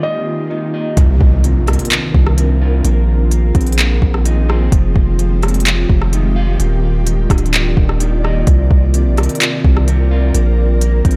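Atmospheric cloud-rap hip hop in C minor at 128 BPM with a half-time feel, this excerpt from a longer piece carries an ethereal, melancholic mood. A felt-muted upright piano, intimate and soft with audible action noise, touches a single high note through a low-pass filter and tape echo in the opening half second, while an airy pad of detuned sawtooth and triangle layers with a noise bed sustains chords through ensemble chorus, reverb and sidechain pumping. A dark, slightly broken-up electric guitar plays fingered arpeggios across the whole clip, colored by spring reverb, filtering and tape echo. At 1.0 seconds the up-front parts arrive: a deep, decaying sine 808-style bass and a smooth, overdriven R&B kit of soft kick, crisp hi-hats, handclaps and rim clicks, joined by a background electronic impact that lasts until 2.8 seconds. The harmony drifts through lush extended chords such as Cm11, Bb9sus4, Fm9 and Ebmaj9, all set in a digital ambience.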